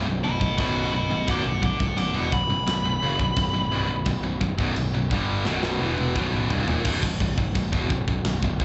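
A dark, high-gain lead guitar carries the melody in this heavy, brooding metal excerpt from a longer piece, soloing from 0.2 s to 4.4 s over an up-front distorted rhythm-guitar riff, a faint second distorted guitar riff that drops out at 6.9 s, a growly fuzz-overdriven picked bass, and a tight acoustic drum kit with crisp china and crash cymbals, toms, a medium-tuned snare and tight kick that plays a fill from 5.5 s, all heard as a live club gig through the venue's PA with a muffled top end and club reverb.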